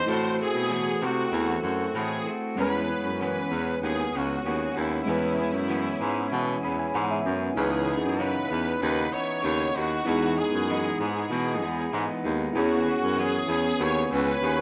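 A straight 4/4 pulse at 96 BPM carries this hazy, nostalgic indie pop excerpt in E major, where a brilliant, punchy trumpet with vibrato, ensemble chorus and slapback echo leads up front over a twangy, slightly broken-up electric guitar through a small old amp with subtle chorus and warbly pitch drift, a clean tine electric piano with a cassette-tape tint and a fill at 6.3 seconds, and a clear, smooth-topped baritone saxophone holding down the bass, all washed in moderate plate reverb in a rough home demo mix, until a blurred, evolving granular cloud pad drifts in at 13.5 seconds behind the chords moving from Am6 through C#m9 and Emaj7 back to E6.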